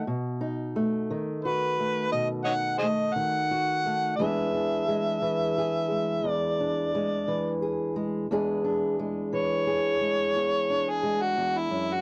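An overdriven, gritty harmonica with vibrato, tongue slaps and scooped notes leads this swaggering, soulful acoustic country blues excerpt in a slow 12/8 at 58 BPM in E mixolydian, playing jazz-style lines up front and taking a solo from 8.3 seconds, over a dark, woody, boxy fingerpicked old ladder-braced acoustic guitar on old strings that moves from B7 to E7, all captured in a dry, close 1970s-style studio sound.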